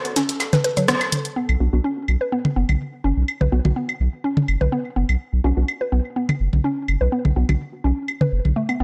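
Quirky and clinical, this minimal techno excerpt in B minor moves at 125 BPM in a straight 4/4, opening with a short break where a pulsing, detuned gated texture hums in the background under an overdriven house kit of hi-hat and rim click, brushed snare and shaker from a small room, and a band accent at 0.9 seconds. A woody, round mallet-like FM pluck with chorus and tape echo carries the riff throughout, while up-front electronic claves and toms run through analog delay. At 1.5 seconds a deep, thick saturated sine sub bass arrives on a B5 chord, joined by a muted, mellow sawtooth dub chord stab with chorus and analog delay, all in light reverb.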